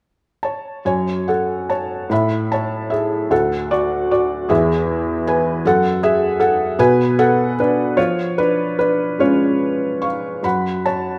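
Set in a moderate concert hall reverb, this melancholic, wistful fragment of lyrical classical solo piano features a felt-muted upright piano, intimate and up front with audible action noise, playing in a flexible rubato 6/8 from 0.4 to 11.2 seconds as its soft, mellow harmonies move from F#m through Bm and C# before settling on an open F#5.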